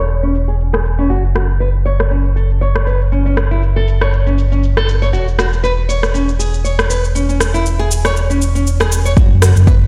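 Driving and earthy, this afro house cut moves at 119 BPM in F# minor with a swung 4/4 feel, built on a smooth, dark sawtooth synth bass that glides with portamento up front, tube-saturated and pumping against the sidechain. A small, bright, fingerpicked nylon-string guitar plays arpeggios through dub echo and sidechain pumping while a filter sweep runs across it until 9.2 seconds, over a house drum kit of cabasa, metallic hi-hats and rim clicks. A punchy, up-front electronic kick arrives only at 9.2 seconds, and the whole mix sounds as if played on a big system in a bare stone room.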